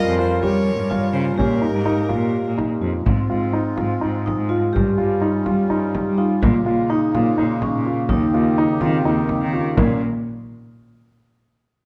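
Straight eighths pulse at 250 BPM in an uneven 7/8, driving this contemporary chamber excerpt in Bb dorian with an urgent yet pensive mood. A clear, bowed violin carries the melody with smooth vibrato only until 2.5 seconds. A frame drum played with soft hands joins at 0.4 seconds, its tone deep and large. Beneath, a rich bowed cello sits up front on the bass line, while a concert grand piano spins short-sustained arpeggios and a vibraphone with soft mallets adds a mellow, ringing second line shaded by slow motor vibrato. A close, dry hand-pumped harmonium holds reedy, nasal, breathing chords through harmony that moves from Gm7b5 and Bbm7 toward Ab6 and Eb7. The whole sits in a moderate recital hall reverb with a dark, warm production.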